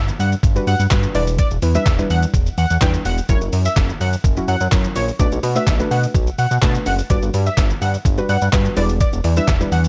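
A straight dance-pop groove comes from a detuned 8-bit drum machine with a thumpy kick, handclaps, hi-hat, shaker and snare, re-recorded in a large room, while a fat, sawtooth-and-square analog bass with a filter sweep pumps to the sidechain beneath it. On top, a bold, retro octave-doubled lead with chorus and vibrato carries the melody, and a soft, round pluck with chorus and sidechain pumping fills in the Gmaj7, Em7, F#7 and Bm7 changes. The sound is dry and gritty with a cassette-tape character, giving this energetic, confident fragment of a longer track a lo-fi hardware edge.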